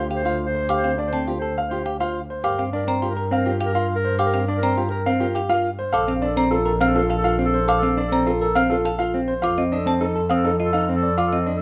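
Set in a steady, straight three-beat metre, this short excerpt of minimalist classical pattern music has a hypnotic, meditative pull. A dark, clean semi-hollow electric guitar sits up front with fingered arpeggios, while a xylophone played with rubber mallets adds woody, dry, percussive arpeggios higher up, close-miked and full in tone. Alongside them, a warm, intimate grand piano carries the melody with long sustain, a slightly boxy character and audible action noise. A clear clarinet with a soft attack and classical style holds a narrow second line, and a single bowed double bass supplies a rich, smooth, even bass with light vibrato. The harmony moves through Dm7, Gm7, Bbmaj7 and F7, all in light reverb.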